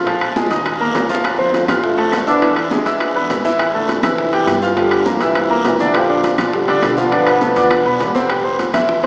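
Salsa at 204 BPM with a joyful, danceable feel, this short cut from a longer piece puts a clear concert grand piano up front over a dark, thumpy pizzicato upright bass, while congas, faint round bongos, ringing metal-shell timbales, woody claves and a raspy, saturated guiro fill out the percussion. A drum fill lands at 0.4 seconds, and a mellow trombone section with light vibrato carries the melody from 1.4 to 8.1 seconds across chords that move from Bb5 through Am7 and Gm7 to C9 before a second section opens on Bb6 at 5.9 seconds. A cathedral reverb bathes the mix in a long, hall-like wash, though the overall sound is small, as if heard through a little speaker.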